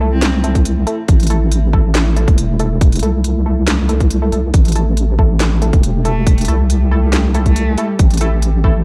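A brooding, meditative slice of deep dubstep in a half-time feel opens with a deep, up-front wobble bass under a dark, detuned analog pad in the background and muted, filter-swept dub chord stabs, all three colored by chorus, with the stabs also trailing dub echo. A garage kit of cracking snare, crisp hats and handclaps enters at 0.2 seconds, and a tight, tape-warm electronic kick joins at 0.6 seconds, both sounding re-recorded in a large room. A single bowed cello, smooth with vibrato and dub echo, surfaces briefly at the start and returns from 6.0 to 7.9 seconds for a short melody within a dark digital ambience.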